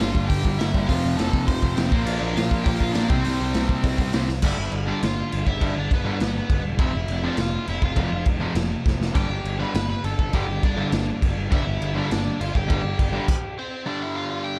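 A dry, raw punk rock excerpt at 203 BPM, energetic and rebellious, with a gritty, saturated garage drum kit up front whose punchy kick, dark cymbals and rolled-off top sit in a pumping small room. A crunchy overdriven guitar carries the melody over a stack of riffing guitars: one bright and overdriven, one distorted and compressed in the background, and a very quiet double-tracked fuzz guitar, all anchored by a growly, fuzzed picked bass. After a drum fill at 4.3 seconds the band drops into half time, and a stop at 13.3 seconds leaves the melody and overdriven riff guitars ringing until 14.6 seconds.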